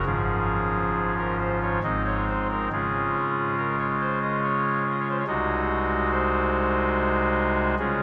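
Reverent and majestic, this brief classical excerpt presents a chorale-style passage for solo pipe organ in 3/4 metre, its beats stretched and pulled with a free, rubato feel. A soft reed registration carries the whole 8 seconds: an oboe-like solo stop with baroque voicing, its reedy, nasal tone touched by a gentle chiff at the start of each note. The organ sits up front, spanning from a deep Ab1 to Eb5 at the top. Its harmony moves from Db/Ab through Ab and Db before settling on Ab7/C at 5.3 seconds, so the phrase ends poised and open, as the fragment is cut from a longer work. A lush cathedral reverb with a 5.8-second decay surrounds the instrument, letting each chord bloom and hang in a vast, resonant space.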